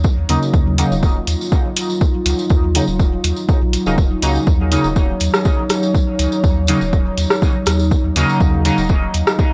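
A steady, straight pulse drives this hazy, nocturnal dub techno excerpt, built on a punchy, layered electronic kick that sits up front with a small-room character. From 0.3 seconds a punchy analog drum machine adds hi-hat and rim click, while a jingly, compressed and saturated acoustic tambourine sits low in the mix. Beneath them, a pure sine sub bass holds deep, clean and smooth sustained notes, breathing with sidechain pumping. A dark analog pad with a slow attack and long release spreads moody, detuned sustained chords over an Ebm7 harmony, colored by chorus, a moving notch and its own sidechain pumping. Alongside them, a juicy, resonant polysynth plays bright ring-modulated stabs, its filter sweeping throughout and drenched in chorus, phaser and dub echo. The sound is dry and gritty, with transformer saturation, a dulled top end, light reverb and a digital ambience.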